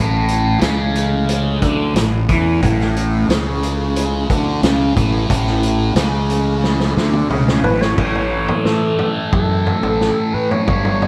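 A thick, double-tracked fuzz guitar drives this hazy, trippy slice of psychedelic rock, its bright, distorted riff run through a phaser and sitting up front from the first second. Beneath it, a round, dark fingered electric bass with overdrive adds weight, while a vintage acoustic drum kit with dark cymbals, a tight kick and a gritty, saturated character joins at 0.3 seconds. The groove moves at a straight 90 BPM in 4/4, in A mixolydian, with a very quiet string machine cello patch holding soft, full-bodied sustained chords in the background. A drum fill from 6.6 seconds carries the music into a new section at 8.0 seconds, just after a hollow, bold lead voiced with an added fifth enters at 7.6 seconds with chorus and vibrato. The band sounds as if playing live together in one large studio, with moderate reverb giving the cut from a longer piece a roomy, vintage feel.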